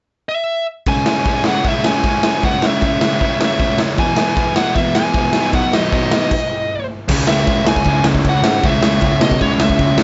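A raw, gritty garage drum kit in a bright stone room drives a straight 4/4 at 155 BPM, giving this rebellious, energetic punk rock excerpt its punch as a smooth overdriven lead guitar carries the melody up front from 0.3 seconds, while a hollow-body semi-hollow guitar and a sludgy distorted guitar churn out background riffs over C#m, E and B, all breaking for a stop at 6.3 seconds before a growling, overdriven picked bass joins at 7.1 seconds.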